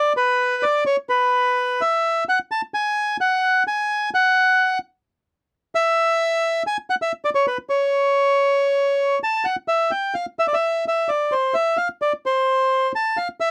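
A solo bandoneon carries this tense, melancholic tango fragment, its reedy, dark voice placed up front in the sound. The playing moves with a rubato feel over a 4/4 metre, staying within a span from B4 to A5. The bandoneon plays alone from the opening moment to 13.5 seconds, with a new section beginning at 9.7 seconds. A light reverb touches the instrument, yet the overall sound remains dry and close, in the manner of a 1970s studio recording. The passage is cut from a longer piece.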